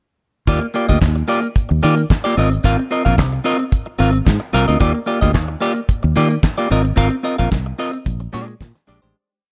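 Disco in Eb major at 111 BPM, this short, glamorous and danceable piece has a damped 70s drum kit driving a four-on-the-floor beat with sixteenth-note hats, a tight kick and a fat snare layered with handclaps, under a round, foam-muted fingered bass playing a syncopated line with chromatic approach notes and a clean, hollow-body semi-hollow guitar chopping sixteenth-note chords through Ebmaj9 and Ab69 to a closing Bb13, all set in a dark, warm production with studio reverb before a fade-out from 7.0 seconds.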